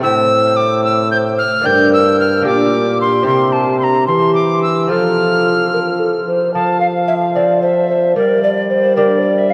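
This is a Renaissance-style consort dance in a straight 6/8, courtly and stately in mood, cut from a longer piece. The alto recorder carries the melody up front with a pure, expressive tone, soft attacks and gentle vibrato. Beneath it, the tenor recorder plays a second line, airy and hollow, with audible tongued chiff and its own vibrato. A warm, punchy trombone, close-miked and classical in style, holds the bass. In the background, a delicate fingerpicked lute on doubled gut strings fills in the accompaniment. All four parts sound throughout, and a new section arrives at 6.5 seconds. The whole recording sits in a wet cathedral reverb and carries the worn, warbling pitch drift of old cassette tape.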